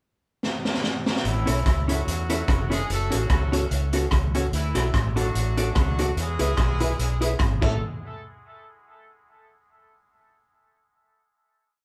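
A swung ska beat at 146 BPM in A major, with a side-stick backbeat on a gritty, boomy garage drum kit, opens with a fill at 0.4 seconds that leads into a bouncy, cheerful head at 1.3 seconds. There a round, punchy muted electric bass walks with chromatic approach notes, a distant horn section with light vibrato plays call-phrase motifs in octaves through a dub echo, and a dark hollow-body jazz guitar soon joins to chop the off-beats, the live band sharing one lightly reverberant room until the final hit at 7.8 seconds.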